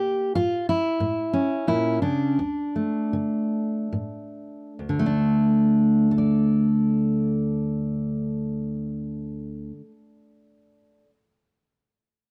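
Folk in a wistful, reflective mood, this short excerpt presents a single fingerpicked steel-string acoustic guitar playing alone in 3/4 with a straight feel, its tempo ranging between 67 and 92 BPM. The dreadnought sounds dark and full-bodied, sitting up front in a dry, close 1970s-style studio sound touched with light reverb. Its range spans from D2 up to D5, giving the lone guitar both deep low notes and higher ones. The tempo slows from 0.3 to 4.8 seconds through the opening section, where the harmony moves from a chordless start to A and then D5. A second section follows at 4.8 seconds, and the guitar plays on until 11.1 seconds, where the cut from a longer piece ends.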